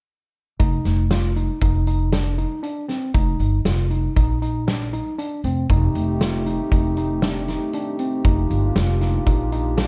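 Intricate and bright, this short cut from a longer piece is progressive instrumental band music moving in an uneven 5/4 with a straight feel. A clean, bright tine electric piano plays arpeggios from 0.6 s, heard through its built-in speakers. Up front, a woody pizzicato upright bass with steel strings holds down the low end, alongside a loose, roomy acoustic drum kit of hi-hat, punchy kick and medium-tuned snare that sounds distant in its studio room. At 5.7 s a deep, nasal analog pad enters with a slow attack and long release, its detuned square and sawtooth tones thickened by chorus and a sub octave. The harmony circles around F, moving through suspended and seventh colours such as Ebmaj7sus2/F and F7, all set in a dark, warm production with moderate studio reverb.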